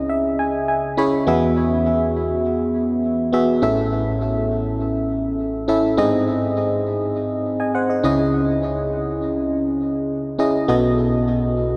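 An FM electric piano opens with a fill over the first 1.3 seconds and plays alone throughout this glossy, uplifting pop excerpt at 102 BPM in E major, its glassy, bell-like attack, warbling vintage chorus and delay sitting up front in a dreamy mix soaked in cathedral reverb as the chords move from C#madd9 through Eadd9, A and G# before turning to B7 at 10.7 seconds.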